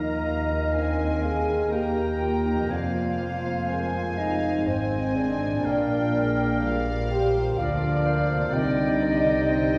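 Uplifting and moving, this cinematic film score excerpt unfolds in an unhurried, rubato three-time, cut from a longer piece. A soft-attacked violin section carries the floating melody, bowed sul tasto with a pure, smooth top, while a second violin section with light vibrato sits in the background alongside a hollow, mellow flute, a clear solo oboe and a bright clarinet tracing supporting lines. A dark French horn section holds sustained chords from a distant, roomy position, as a dark viola section and a very quiet, lush cello section, both bowed sul tasto, fill out the middle and low end with a woody double bass section beneath. A very quiet grand piano with deep bass and a ringing, fingerpicked harp playing arpeggios add gentle accompaniment. The harmony moves from Ebsus2 through Fm and Bb to Cmadd9 at 8.5 seconds, all set in a wet scoring-stage reverb heard from further back in the room with a softened top end.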